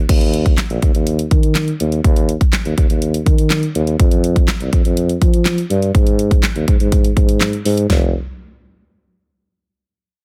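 A punchy, vibrato-laced tuba carries the bass line with a sidechain pump through this driving, energetic dance-pop excerpt at 123 BPM, alongside a layered electronic pop kit of punchy kick, fat snare, handclaps, hi-hat, toms and crash that plays until 8.0 seconds, all dry and up front in a dense, heavily limited modern master cut from a longer piece.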